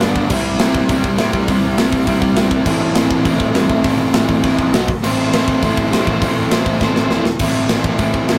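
A straight 4/4 beat from a tight, up-front metal drum kit with bright cymbals and a fill at 6.8 s drives this aggressive, raw punk rock excerpt, where a dark, overdriven semi-hollow guitar riff sits forward over a compressed, distorted electric guitar and a growly picked bass in the background, captured as a rough rehearsal-room recording with tube saturation and small-room reverb.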